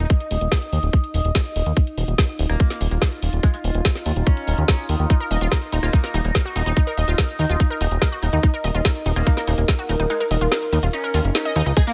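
A fat, nasal analog bass drives this alien psychedelic trance excerpt beneath a tight, up-front electronic kick and a garage kit of woody snare and metallic hats, while a resonant overtone-sweeping drone with chorus and reverb sustains chords, a saturated FM wobble bass with tape echo wobbles in the background, a lush wave-folded unison pluck riff with delay enters at 5.1 s, the kick drops out at 10.1 s, and a punchy phaser-treated supersaw stab lands at 11.8 s.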